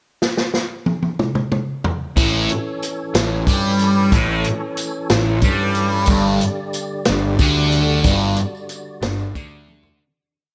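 This short psychedelic rock piece opens at 0.2 seconds with a vintage acoustic drum kit playing a pickup fill, its punchy kick and medium-tuned snare sitting up front with a rolled-off top in a small, natural-sounding room. At 2.2 seconds the full band arrives in a hypnotic, hazy 6/8 groove. A thick, double-tracked fuzz guitar with a bright, distorted edge and a phaser carries a single-note riff up front. A fuzz-picked electric bass, overdriven and played direct and amped, doubles that syncopated riff. A fat, clean tonewheel organ holds sustained pad chords behind them, with third-harmonic percussion, key click, chorus vibrato and a slow rotary speaker, while a jingly, compressed tambourine keeps an evenly spread pattern in the background. The harmony moves from an A chord to a G power chord under light reverb, and the piece fades out from 8.1 seconds as the drums close on a final fill.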